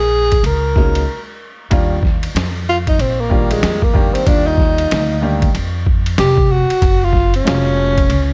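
Swung sixteenths in 4/4 drive this relaxed, cool jazz-hop excerpt. A gritty, compressed, pitched-down boom bap sampler-style kit of thumpy kick, medium-tuned snare, hi-hat and ride sits up front from 0.3 s, tape-warm and small-room flavoured, beside a woody pizzicato upright bass on gut strings, while a clear, smooth, vintage upright piano with long sustain joins at 0.8 s. After a short break, the mellow, breathy tenor saxophone, up front with subtone, vibrato and scooped notes, takes a jazz-style solo from 1.7 s over Ebmaj9 harmony, all wrapped in a dark production with studio reverb.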